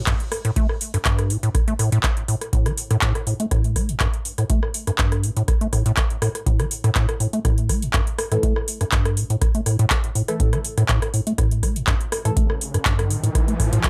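A rubbery, resonant acid bass riff with cassette-tape grit and delay opens this driving, trippy acid house cut at 122 BPM, joined from the start by a deep, tape-warm electronic kick and a booming analog drum machine with handclaps, rim clicks and metallic hi-hats pushed up front. At 8.3 seconds a dark, muted dub chord stab built from detuned sawtooths slips in, its filter pluck and moving notch coloured by phaser, lush chorus and delay, over an A5 chord. An electronic riser enters at 12.2 seconds as the piece is cut from a longer track, all set in light reverb.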